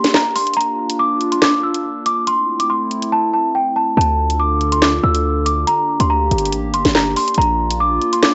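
Ominous and menacing, this short excerpt of half-time drill hip hop moves at 141 BPM in D minor. A worn celesta carries the melody up front, its bell-like, delicate tone softened by felt hammers and slightly out of tune, while a hollow, flute-like pad holds dark sustained chords beneath it with a slow attack, long release and chorus. The electronic drill kit sits forward with a sharp snare, bright hi-hats and handclaps, then drops out from 3.1 to 4.0 seconds. At 4.0 seconds a hard-hitting 808-style bass arrives, punchy and heavy with a fast attack that decays, and it plays until 8.0 seconds. The chords move through Gm, Bb, Am and Dm, and cassette tape gives the celesta, pad and drums a worn, muffled character, set in light reverb with a homemade feel.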